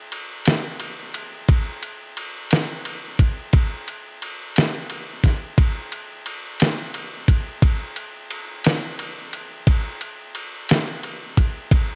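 A dusty soul sampler-style drum kit carries this short, soulful and mournful blues excerpt in a slow 12/8, its thumpy kick, fat snare and ride cymbal sitting gritty, compressed and up front in a dry, intimate home cassette recording.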